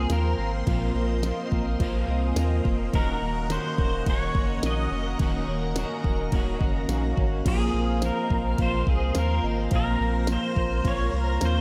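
A straight 4/4 pulse from a glitchy electronic drum kit with a deep kick and tiny snare anchors this hazy, haunting dream pop excerpt, where a bright, twangy pedal steel guitar carries the melody over a boxy, octave-doubled fingerpicked twelve-string acoustic guitar, a slightly broken-up electric guitar in the background, shimmering vintage string-machine violins, a round sine sub bass up front and, from 2.1 s, a very quiet bell-like celesta, in a dreamy mix soaked in plate reverb as the chords move from Bbsus2 to Ebm7 and return to Bbsus2 at 7.5 s.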